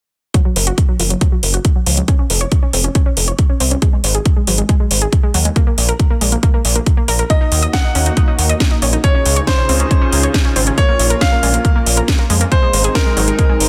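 A straight 4/4 pulse drives this soaring, emotional uplifting trance excerpt, with a punchy, up-front electronic kick and a layered house kit of cracking snare and metallic hats, both carrying a tape-tinged, small-room character. From the opening moments a gritty, nasal sawtooth bass, distorted and tube-saturated, pumps against the kick while an analog pluck spins round, warbling, vintage-toned arpeggios through chorus, digital delay and sidechain pumping. A filter sweep runs across the pluck for the whole passage. At 7.3 seconds a brilliant grand piano adds a second line with a digital delay trail, while a lush, thick, airy unison pad of detuned saws spreads sustained chords through chorus and phaser, pumping in time. The harmony moves from Ebm through Dbadd9 and Bbm to Ab in the second half, all set in a digital ambience within a dense, heavily limited modern master.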